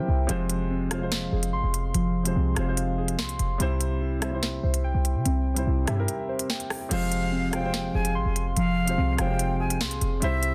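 A dense, heavily limited mix with light reverb frames this tense, ominous drill excerpt in F harmonic minor at 145 BPM in half-time, where a dark, mellow concert grand piano accompanies while muted, warbling felt-like synth keys with chorus and delay play arpeggios over a punchy, tight 808-style bass and crisp, sharp electronic drums entering at 0.3 seconds, with a break at 6.1 seconds before an airy silver flute with vibrato and delay takes a second line from 6.9 seconds.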